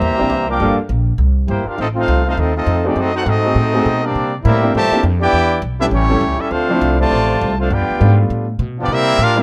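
Big band swing in 4/4 with a swing feel, this energetic, brassy passage is cut from a longer piece. The trumpet section carries the melody up front with a smooth top and a warm ensemble blend, while a tight, clear trombone section with light vibrato supplies a second line beneath it. A woody, pizzicato upright bass sits equally forward, anchoring the changes that move from C7 through F7 and F#dim7 to a closing run of Em7, A7, Dm7, G7 and C7. The concert grand piano offers natural-sounding accompaniment with a deep low end, briefly touching in at 0.2 seconds before returning at 2.8 seconds and staying to the finish. Close, detailed microphones and a light reverb keep the horns and rhythm section present and crisp.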